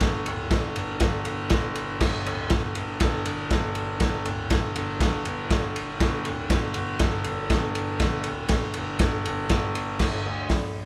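Garage rock in G minor at 120 BPM, this short excerpt from a longer piece moves in a straight 4/4 with a menacing, raw mood. A bright grand piano carries the bass line, sitting low between D1 and D2, with a brilliant, polished tone, long sustain and audible action noise that keeps it intimate and up front. The raw garage drum kit plays from the start to 10.6 seconds, using crash and ride cymbals, hi-hat, a boomy kick and a medium-tuned snare. Its sound is saturated and gritty with a rolled-off top, caught in a small, pumping room and placed up front. The two parts sound like a band playing live in one room, touched by light reverb.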